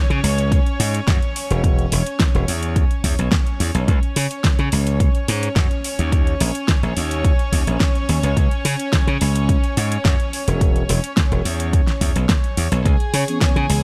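A chamber string section opens this groovy, sensual nu-disco excerpt, holding sustained chords with a reedy, gut-string tone and light vibrato, pumped by sidechain compression. A bright, punchy slap bass arrives up front almost at once, joined by a pop drum kit with a fat snare and metallic hats and by a layered electronic kick. Both drum parts carry studio reverb and a produced, tape-warm character over a straight 4/4 feel. At 13.1 seconds a thick, detuned sawtooth lead with vibrato, lush chorus and digital delay briefly appears on a single high note. It is followed at 13.3 seconds by round, brassy synth brass with chorus and a cassette-tape tint, over the C#m7 chord that arrived at 12.9 seconds. A digital ambience surrounds the whole mix.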